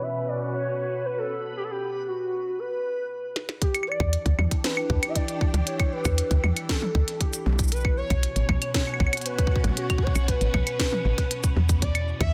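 A straight 4/4 groove underpins this intricate, melancholic IDM cut from a longer piece, where a warbling, nostalgic lead melody rides over silky, phased string-machine chords with sidechain pumping and a reversed, dreamy swelling texture that stops at 1.6 s, before a clicky, overdriven glitchy drum kit enters with a fill at 3.4 s, joined by a tight, up-front electronic kick and, at 4.0 s, a woody, round FM bass, all set in moderate plate reverb under a dense, heavily limited master.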